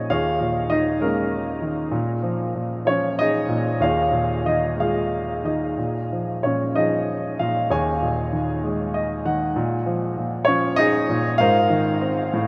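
Bathed in a huge, wet reverb that evokes a vast, echoing space, this short excerpt cut from a longer classical piece features a present, polished baby grand piano playing alone up front in Bb minor, its reflective, melancholic 6/8 line moving with rubato at about 59-67 BPM over alternating Eb7sus4 and Bbm7 chords, adding a brief fill from 8.6 to 9.5 seconds before settling on Ab69.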